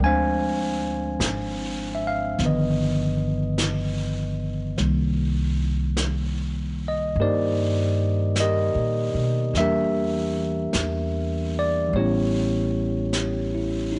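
A clean tine electric piano played through a combo amp sits up front in this smoky, melancholic jazz ballad excerpt in C minor, moving slowly at 50 BPM with a swung feel over a woody pizzicato upright bass and a natural-sounding brush drum kit with a medium-tuned snare and hi-hat, all heard in a small room with a dark top end as the chords pass from Dm7b5 and G7b13 to Cm9, then Em7b5 and A7.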